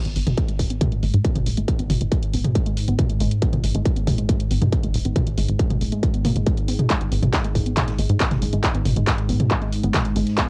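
A straight, driving pulse powers this dark, hypnotic slice of peak-time techno, cut from a longer piece, with a distorted, layered electronic kick sitting up front beside a punchy analog drum machine whose handclaps, hi-hat and toms carry a tape-worn grit. A tight sequencer bass in sawtooth and square tones plucks out fast-attack, decaying notes low in the register, tube-saturated and breathing with sidechain pumping. In the background, a warbly, dusty lo-fi pluck repeats a narrow riff through chorus and tape echo, while a deep, full-bodied ambient pad of detuned unison saws and a sub octave holds a single low drone with slow attack and long release, washed in its own reverb and breathing with sidechain pumping. A filter sweep runs through the whole passage, and from 6.9 s a very quiet, natural-sounding acoustic big-band kit adds faint swinging hi-hat and snare. The mix has a homemade cassette character in a modest small room, giving the club energy a murky, moody haze.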